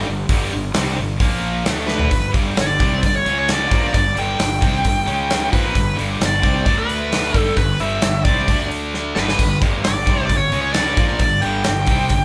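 Powerful and energetic, this hard rock clip at 132 BPM in straight 4/4 opens on two heavy, high-gain distorted guitars picking a background riff over a punchy, fuzz-overdriven fingered bass, joined at 0.3 s by a polished, up-front gated 80s drum kit with bright cymbals and a tight kick, all played live in one large reverberant room, before a smooth, overdriven lead guitar enters up front at 1.9 s with a melody between B4 and G5 as the drums fill at 1.9 s and again at 8.9 s over power chords centred on G with turns to Bb, D and C#.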